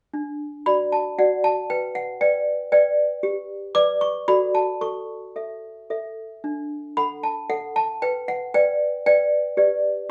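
A classical lullaby for solo toy piano, this brief excerpt cut from a longer piece has a dreamy, innocent mood. It moves in triple metre at 115 BPM with a rubato feel, centred in D major and spanning from D4 up to D6. The toy piano sits up front and sounds clanky and bell-like, slightly out of tune, with the knock of wooden hammers softened into a mellow, airy tone. The harmony drifts between D, G and A chords, including G/B and D/F# inversions, returning to D at 6.4 seconds before settling on G at 9.6 seconds. A wet studio ambience surrounds the instrument, and the top end is rolled off for a soft sound.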